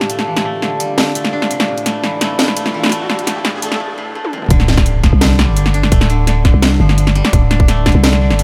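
Half-time drum and bass at 170 BPM in D dorian, this dark, cinematic excerpt opens with koto arpeggios, woody and plucked with fingerpicks, over a moody, nasal analog pad with chorus and sidechain pumping and an overdriven kit of cracking snare, bright hats and toms, joined at 0.8 seconds by a very quiet riser. After a break and a drum fill, the drop at 4.5 seconds brings a tight, overdriven electronic kick and a growling, buzzy 808-style bass up front, with a faint reversed, dreamy granular texture following at 5.5 seconds.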